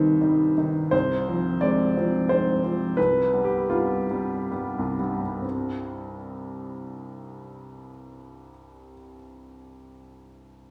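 Set in a moderate recital-hall reverb, a clear, woody upright piano with a vintage tone and long sustain sits up front in this brooding, stormy romantic character piece in C minor and 3/4, taken from a longer work, moving with free rubato between 61 and 91 BPM, slowing down through its opening 5.4 seconds before a new section begins there and runs to 10.3 seconds, with chords shifting from C minor through F minor and G7 over a C bass to a bare C fifth.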